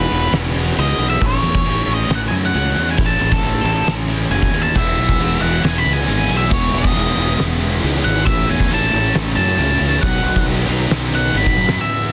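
Quiet-loud alternative rock at 136 BPM, restless and anthemic, opens straight into a dark octave-fuzz lead guitar solo over a bright distorted rhythm guitar riff, a growly fuzz-fingered bass up front and an oversized low-tuned drum kit with a fat snare, punchy kick and dark cymbals in a pumping stone room, joined at 4.7 s by a biting overdriven second guitar as the chords move from E through A to B before a drum fill at 11.6 s, all in a dense, heavily limited modern master.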